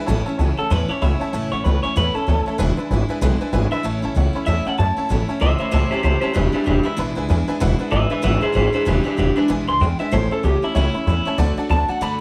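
Rockabilly with an upbeat, retro swing, cut from a longer piece and set in a small room: a twangy, slightly broken-up electric guitar through a small old amp carries the melody up front, its lo-fi tone trailed by tape echo. Underneath, a woody, thumpy pizzicato upright bass on gut strings drives the low end, while a full-bodied picked dreadnought acoustic and a detuned, jangly honky-tonk upright piano fill in the accompaniment. The tune moves into a second section at 5.1 seconds, with the chords circling between A and E7 before landing on D near the close.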